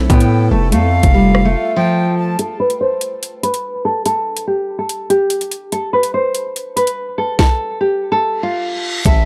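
Menacing and cold, this half-time drill hip hop passage, cut from a longer piece, places an up-front, fingerpicked nylon-string guitar melody, low-pass filtered and given a filter sweep from 2.4 seconds, over an electronic drum kit of knocking kick, sharp snare, rim click and metallic hats. A saturated, heavy distorted 808-style bass, a soft, detuned airy pad with chorus and a breathy, close-miked silver concert flute with tape echo open the piece; the bass drops out for a break at 1.6 seconds, pad and flute fall away at 2.4, and bass and flute return briefly at the close alongside a reverse cymbal and downlifter, all in a dry, gritty sound.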